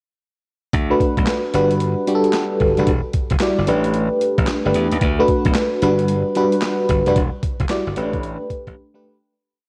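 A bouncy, upbeat new jack swing R&B piece opens at 0.7 seconds with a glassy slap bass and a gritty boom bap sampler-style drum kit, both up front. The drums play a hard-swung drum-machine beat with a thumpy kick, hi-hat and a high-tuned snare layered with handclaps, and they sound compressed and pitched down with cassette tape coloring. The bright, punchy bass line bounces in a swung synth-funk style, with muted ghost notes and chromatic approach notes. Just after, an FM electric piano with tremolo and phaser enters as the loudest part, with a noise layer and a fast, decaying attack. It plays syncopated chord stabs in drop-2 voicings with grace notes over a cycle of D6, Gmaj7, Em9 and A9sus4. The whole piece is one verse with light reverb and a home-cassette character; it fades out from 7.2 seconds, and the electric piano rings on alone in a brief break from 8.8 seconds.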